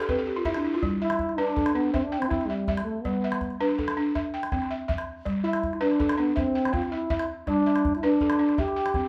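A moderate, large-studio reverb surrounds this short, hypnotic and joyful excerpt of West African traditional string and xylophone music in 12/8 at 108 BPM in G mixolydian, where an up-front, woody, buzzing balafon played with soft rubber mallets opens with a fill before playing arpeggios over alternating C and G chords, a small, compressed, saturated calabash keeps the percussion, and from 1.0 seconds a dark, breathy solo trombone with light vibrato and a smooth top sings a jazz-style melody.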